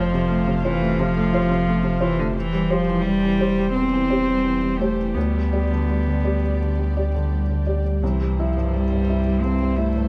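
A rich, bowed solo cello carries a floating second line up front in this tender, hopeful neoclassical piece with a rubato feel, set over a mellow, intimate felt-muted upright piano accompaniment, dark sustained chords from a close chamber string section and a deep, punchy sine sub bass, within a dry, warm production touched by a faint mains hum.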